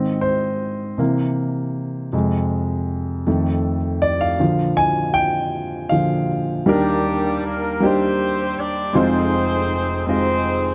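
The recording has a dark, warm production with a light touch of reverb, and it is a short cut from a longer piece. This uplifting, soulful gospel passage moves in 6/8 with a straight feel. A grand piano opens alone, sounding natural and close, with the soft mechanical noise of its action audible as it lays down the accompaniment across a broad range. At 6.7 seconds a horn section enters with the melody, bringing a dusky, roomy ensemble tone with light vibrato and octave doubling in a pop style. The harmony travels through Ab, C7, Fm, F7 and Bb before settling onto Ebmaj7 and Fm7 as the horns carry the tune to the close at 10.7 seconds.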